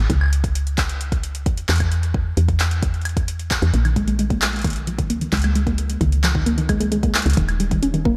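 A straight 4/4 groove from a booming analog drum machine, with handclaps, metallic hi-hat and woodblock trailing into a diffuse ambient delay, sits over a deep, tape-warm electronic kick and a soft, round, woody FM bass that moves from Dbm to Bbm7 in this cerebral, melancholic IDM fragment cut from a longer piece. At 3.7 s a warbly, dusty pluck joins with lo-fi, nasal, detuned arpeggios colored by chorus, cassette tape and tape echo. The whole dreamy mix is soaked in a lush hall reverb.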